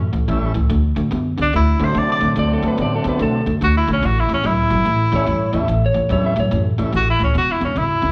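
A swung 144 BPM shuffle in 4/4 drives this swaggering, soulful electric blues excerpt in A mixolydian, where a crunchy, bright overdriven guitar riff sits up front over woody, thumpy pizzicato upright bass, a thick tonewheel organ through a slow rotary speaker joins as accompaniment at 0.3 s, a warm tenor saxophone with light vibrato takes the jazz-style melody from 1.4 s, and a dark, compressed slide guitar played with fingerpicks adds a second line from 2.4 s, all heard as a band playing live in one room with moderate large studio reverb.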